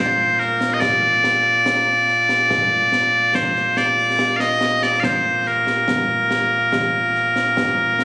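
Ceremonial and stirring, this short cut from a longer piece of traditional Scottish pipe music moves at 71 BPM in a straight 3/4 in Bb major, led by loud, bright bagpipes carrying a piercing, continuous solo melody up front from the opening moment. A concert snare drum and concert bass drum enter at 0.4 seconds, sitting well beneath the pipes with an acoustic, live-room sound and bright cymbals. The whole was captured on a phone in the room and given light studio reverb and compression.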